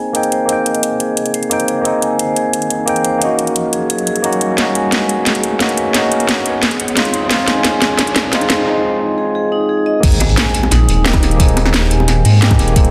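A barky, lightly overdriven tine electric piano and a ringing hard-mallet vibraphone open this uplifting, lush liquid drum and bass excerpt, both filtered and trailed by tape echo, while an up-front garage kit with a cracking snare and metallic hats joins and a background riser builds toward a drum fill over the first 10 seconds. At 10.0 s the drop lands with an impact, a deep, rumbling detuned saw bass and a knocking electronic kick, with a gritty, rolled-off breakbeat kit and tight, high-tuned bongos tucked behind. The harmony moves from Abmaj9 through Bmaj9 and Dbmaj9 before returning to Abmaj9, set in a hall reverb within a dense, heavily limited modern master.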